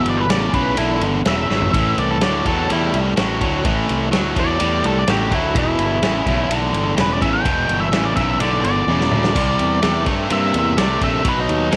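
An octave-fuzz lead guitar, dark and distorted, solos for the whole of this gritty, brooding blues rock and southern rock excerpt, moving over Em7, Am7, C and B chords. Beneath it, a bright, double-tracked distorted electric guitar riff sits up front with overdrive, while a growly, punchy fuzz bass adds its own overdriven grit. A muffled, lo-fi vintage drum kit with a punchy kick and a rolled-off top enters at 0.1 seconds and plays fills at 1.5 and 8.9 seconds, all in a small room with light reverb.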